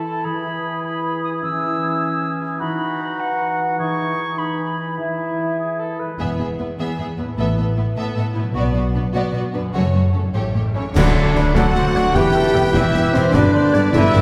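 A bright clarinet, pure flute and warm oboe trace second lines over mellow French horn chords and a ringing, fingerpicked harp arpeggio in this triumphant, soaring excerpt of heroic adventure film score, moving in a straight 6/8 at 101 BPM in E major. At 6.2 s the music turns mixolydian as the woodwinds and horns give way to lush bowed strings, with a rich, vibrato violin melody over clear violins and violas and a deep cello and double bass foundation, and from 8.6 s a cymbal swell with dark clash cymbals and bass drum builds the tension. From 11.0 s the woodwinds and horns return alongside present trumpet stabs, a very quiet, dark trombone section, close and dry snare-led drums and a brief hard-mallet timpani stroke, all set in the generous reverb of a scoring stage heard from further back in the room.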